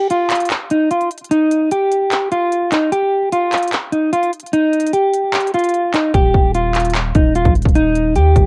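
A mellow, dark electric guitar leads this triumphant yet dreamy trap excerpt, its clean, fingered melody softened by a low-pass filter and cassette tape, with a half-time trap kit of hard-clipped kick, crisp hi-hats and handclaps carrying the same tape character up front. At 6.1 seconds a deep, sine-like 808 bass arrives on an Eb chord, its fast attack decaying into long, sustained tones beneath the guitar. Light reverb and the homespun cassette recording give the piece a hazy, intimate glow.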